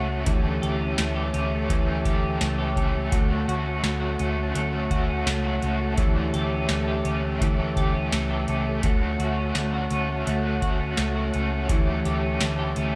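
A booming analog drum machine sits up front in this floating, ethereal dream pop excerpt, its deep kick, crisp snare, metallic hi-hats and tambourine entering at 0.3 s and carrying the sound of a large room. Beneath it, a vintage muted picked electric bass gives a dark, round and punchy low end, also placed close to the listener. A semi-hollow electric guitar plays clean, picked arpeggios coloured by analog chorus, delay and shimmer reverb. A raw garage guitar, bright and double-tracked, adds overdriven accompaniment through tremolo, lush chorus and its own shimmer reverb. A mellow, flute-like tonewheel organ holds soft sustained chords through a fast rotary speaker, also bathed in shimmer reverb. In a steady 4/4 with a straight feel, the harmony drifts between A7/D and Dmaj7, all sitting in a light digital ambience.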